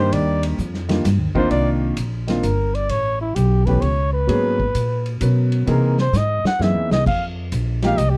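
A breathy, mellow flugelhorn solos with vibrato and scooped notes over a deep-voiced grand piano and a woody, growly pizzicato upright bass, opening this short, relaxed and sophisticated jazz passage in a swung 3/4 at 130 BPM. A vintage drum kit with dark cymbals, a punchy kick and a rolled-off top sits low in the mix, playing a fill from 6.1 to 7.1 seconds. The harmony moves through rich chords from Ebmaj9 to Fm11, and studio reverb adds space.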